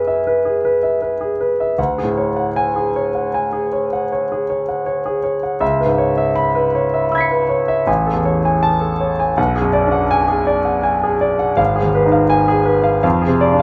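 A clear, intimate concert grand piano plays alone from the first second in this hazy, mysterious impressionist classical passage, cut from a longer piece and moving at about 80 BPM in 5/4 with uneven, rubato beats and tuning set to A4 = 435 Hz. Its harmony drifts through colorful chords such as Eadd9/F#, Dmaj7#11, C#m7 and Amaj7 before settling into a chain of minor sixth chords ending on Fm6 at 13.0 seconds. The piano sits up front with a polished, present tone, deep bass reaching down to G#1, audible action noise and a light touch of reverb.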